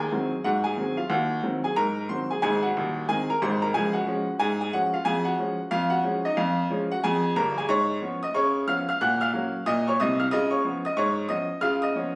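A phone recording captures a clear, woody upright piano sitting up front in a club room, with a moderate studio reverb and compression shaping the sound. This is a ragtime piece in 2/4, lively and jaunty, carried on a swung sixteenth-note feel. The piano plays alone for the full twelve seconds, ranging from a deep Eb1 up to a bright F#6. The harmony opens on Ab7, settles onto the home chord at 3.7 seconds, then moves through a dominant seventh and on to a closing C#7 at 10.3 seconds. Cut from a longer piece, this short passage covers a single section of the tune.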